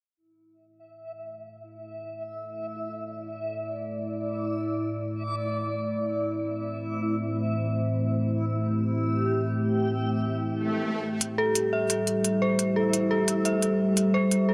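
Free-floating and unmetered, this cinematic, dark half-time drum and bass excerpt opens at 1.0 seconds with a reversed, dreamy granular texture, soon joined by a deep, moody pad of detuned sawtooth with a sub octave under a filter sweep, until an electronic swell gives way at 11.2 seconds to crisp, tape-tinged electronic hi-hats, followed at 11.4 seconds by an eerie, inharmonic FM synth bell playing arpeggios through chorus and digital delay, all set in light reverb with a dark production.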